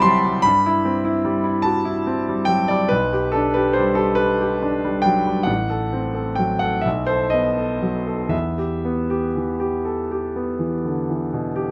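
Classical romantic nocturne for solo concert grand piano in a rubato 12/8, melancholic and yearning, its clear, up-front tone with deep bass and long sustain ranging from A1 to C6 through a light reverb as the harmony moves from Cmaj7 through F#dim/A and B7 to settle on Em at 8.3 seconds in this brief cut from a longer piece.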